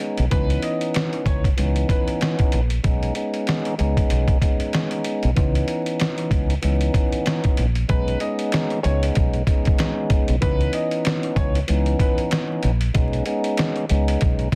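Boom-bap hip-hop with a tough, gritty mood, this excerpt moves at 95 BPM in 4/4 with a swung sixteenth-note feel, cycling between C#m9 and B69 chords. A fat tonewheel organ runs through the whole passage as accompaniment, turning slowly through a rotary speaker and dulled by cassette tape coloring and filtering. Underneath, a deep dub fingered electric bass sits up front with a dark, round, foam-muted tone, while a trip hop sampler-style drum kit supplies a thumpy kick, medium-tuned snare and hi-hat, pitched down and compressed with vintage 12-bit sampler grit and the echo of a large room. A clear, woody upright piano, slightly detuned and carrying long sustain, places a brief melody near the start and returns at 7.9 seconds, bathed in plate reverb and tape echo. A very quiet, saturated finger snap joins at 8.5 seconds, and the dense, heavily limited master is dusted with vinyl crackle and light reverb.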